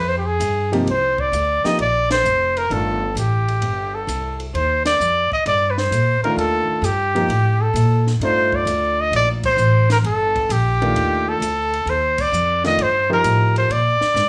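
A small room's light reverb surrounds this spiritual, hypnotic fragment of swinging modal jazz, where a warm, up-front trumpet sings the solo melody with vibrato and a soft attack over a woody, thumpy upright bass played pizzicato on gut strings. A compact cocktail kit sits dry and low in the mix, its dark cymbals, high-tuned snare and punchy kick joining at 0.4 seconds, while a polished grand piano comps briefly at 0.7 seconds and returns at 6.2 seconds. The band hits several shared accents as the harmony rests on a Cm11 chord before shifting to Bb7 near the close.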